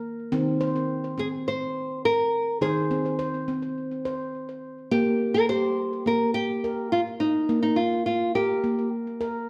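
A wet echo chamber reverb with a 1.3-second tail surrounds this short cut from a longer world piece, a gentle, calm and meditative stretch of tuned percussion in Eb major at 105 BPM in straight 4/4, tuned to A4 = 439 Hz. A nitrided steel handpan carries the arpeggios from the opening through to the close, its sharp finger strokes bright, ringing and airy, sitting up front and trailed by a delay. At 1.2 seconds a fingerpicked nylon-string guitar enters with the melody, its dark, small acoustic tone also placed up front and slightly louder than the handpan. The harmony moves from a rootless Ab over Eb to a rootless Eb over Bb, with that change at 4.9 seconds opening a second section. The guitar stops at 8.9 seconds, leaving the handpan to finish alone.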